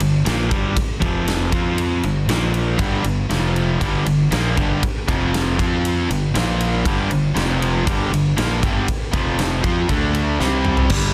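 A dense, heavily limited mix with light reverb carries this driving, menacing hard rock excerpt in G minor at 118 BPM, where an up-front overdriven electric guitar picks a warm riff over growly fuzz bass and a punchy, big-room arena drum kit, a bright cranked stack guitar joins in the background at 2.8 seconds, and the chords cycle through G minor, F5, G5 and Bb5 before moving to D5 and then C5, under which a drum fill arrives at 10.4 seconds.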